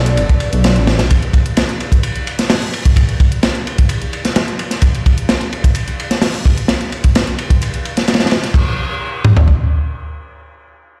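A playful, funky breakbeat excerpt at 129 BPM opens on a brief Bm7 chord, with dark, bowed strings pumping softly in the background over a deep, rumbling detuned saw bass, both dropping out at 1.1 seconds. Almost from the start, a bright electronic hi-hat enters far back in the mix at 0.1 seconds and runs until 8.5 seconds, joined at 0.2 seconds by a crunchy, saturated breakbeat kit with a tight kick, gritty snare, toms and dusky cymbals that drives up front. The whole sounds as if played through a big sound system in a bare stone room, with light reverb.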